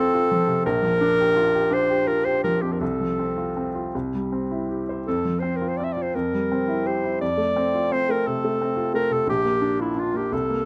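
Classical romantic music for clarinet and baby grand piano, this short fragment of a longer piece in F major has a tender, lyrical mood. It moves at 53 to 61 beats per minute, counted in dotted quarters, in a gently flexible 6/8 with free rubato. The close-miked clarinet carries the solo melody up front across a compact range from E4 to E5, its warm classical tone sitting slightly above the piano. The baby grand plays the accompaniment throughout, reaching from deep Bb1 bass notes up to C5 with a warm, natural sound. The harmony circles the home key, passing through Gm7/Bb, F/C and C before settling on F, and returns to Gm7/Bb at 9.3 seconds as the passage ends at 10.7 seconds. Close, detailed microphones and a light reverb give the duo an intimate, present sound.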